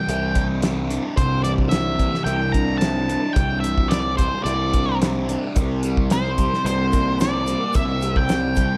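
A dark, up-front octave-fuzz lead guitar carries the melody with slapback echo over a double-tracked, phased fuzz guitar riff, a punchy overdriven fuzz bass and a thuddy, cloth-damped drum kit with a fat snare and tight kick, while a shimmering, buzzing tanpura drone sounds faintly only until 3.2 seconds and a grainy tube shaker slips in very quietly at 5.6 seconds as the harmony moves from Cadd9 to Gm/C, giving this hypnotic, kaleidoscopic psychedelic rock fragment a close, small-room feel.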